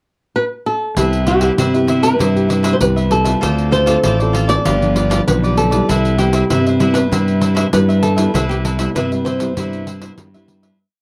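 A punchy, overdriven fuzz bass sits up front in this joyful, sunny samba and choro piece, its bright, amped tone carrying a samba bass figure from 1.0 seconds. Before it, a dark, woody flamenco guitar with old strings opens alone in the pickup at 0.4 seconds, then plays a fingerpicked, motif-based melody built from song-like phrases. Alongside, a crisp cavaquinho strums in sixteenths, while a warm nylon-string guitar in the background supplies thumb bass and syncopated plucked chords in a classical manner, with finger squeak audible. A jingly, compressed pandeiro played with hard hands adds a saturated edge. The harmony moves from Cmaj7 through Dm7 and G7 and returns to Cmaj7, all in a dry, close 1970s-style studio sound with light reverb, until a fade-out begins at 8.3 seconds.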